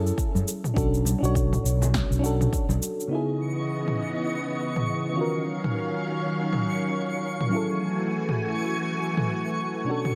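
Smooth and relaxed, this sunset chillout excerpt moves at 102 BPM in 4/4 with a gentle swing on the sixteenths. A mellow FM electric piano with a soft, round, warbling tone, treated with chorus and digital delay, carries the chords throughout, while a fretless electric bass sits up front in the opening bars alongside an overdriven electronic kick with a deep thump and ringing congas played with soft hands in the background. The deep house kit, also overdriven, adds a punchy snare, cabasa and toms across the whole clip. At 3.1 s the bass, kick and congas have dropped away and a silky string machine swells in with slow-attack, bright, ensemble-chorused chords, joined at 3.4 s by a twinkling granular texture with an octave-up shimmer. The harmony drifts through lush minor ninth chords, moving from Bm9 to C#m9, D#m9 and F#m9, all bathed in a moderate concert hall reverb.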